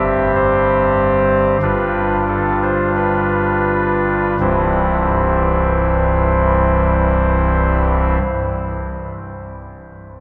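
A chamber organ on a soft reed voice carries this brief, majestic chorale alone, its oboe solo stop sitting up front with a delicate chiff at the start of each note and a chamber-scale voicing. The classical piece moves in a slow, rubato 4/4 at around 40-50 BPM in C major, spanning from C1 up to E5. The opening harmony rests on C/G, shifts to G7 at 1.6 seconds, and the pace slows through the first 4.4 seconds before settling onto a C chord. The organ sounds until 8.2 seconds, after which the long cathedral reverb, with an RT60 of 6.2 seconds, carries the sound on to the close at 10.1 seconds. Heard from further back in a resonant stone space, the reverent mood comes as much from the room's lingering decay as from the chords themselves, in a fragment cut from a longer work.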